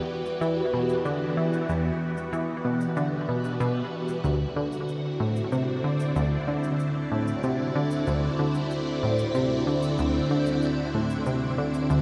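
A straight 4/4 pulse drives this cosmic, mysterious excerpt of ambient, sequencer-driven space music, where a punchy, funky plucky analog bass riff with ring modulation and tape echo sits up front over a background of electronic toms and cabasa, tape-warm and fading in across the full 12 seconds. A bright, swirling phased string machine holds sustained chords, warbling with ensemble chorus, phaser and shimmer reverb as the harmony moves from Em9 to D7 at 4.2 seconds. Beneath it all a very quiet, nasal analog drone evolves, and the whole dreamy mix is soaked in a vast cathedral reverb.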